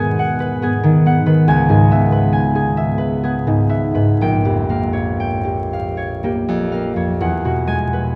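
Classical solo harp music, serene and peaceful, unfolds in an unhurried 3/4 at 58 to 70 BPM with a freely breathing rubato feel, tuned to A4 = 443 Hz. The concert harp carries the whole of this brief 8.2-second fragment from a longer piece, its fingerpicked strings spanning A#1 to G#5 and sitting up front in the mix with an acoustic, warm, ringing tone. The harmony drifts from G#m7 to C#m7, then to A#m6, before settling on Eadd9 at 7.2 seconds. A wet cathedral reverb with a 6.7-second decay lets each note bloom and linger in the space. The dark, warm production adds a vinyl crackle beneath the resonant sound.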